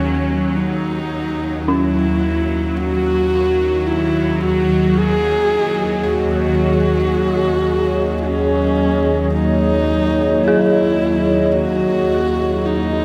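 A husky, woody horsehead fiddle carries the melody up front with vibrato and portamento, over a tense, string-like drone and the eerie, inharmonic shimmer of a detuned synth bell playing arpeggios in the background. This dark, desolate ambient drone excerpt adds a deep, moody analog pad of sustained chords from 2.4 seconds, while a quartz singing bowl rings barely audibly beneath. A plate reverb soaks the mix in a dreamy haze, and analog delay trails the fiddle and bell.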